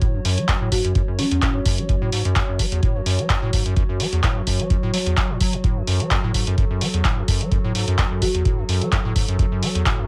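A driving, raw acid house excerpt opens at once with an overdriven deep electronic kick and a punchy analog drum machine's handclaps and hi-hat, both with a small-room tone, under a squelchy, resonant square-wave acid bass riff carrying overdrive, digital delay and sidechain pumping, and a warbling, nostalgic lo-fi pad holding detuned sustained chords through chorus, reverb and its own sidechain pumping, while a woody soft-mallet marimba, roughened by vintage 12-bit sampler grit and delay, adds brief melodic touches at 0.7 and 8.2 seconds over a light swing.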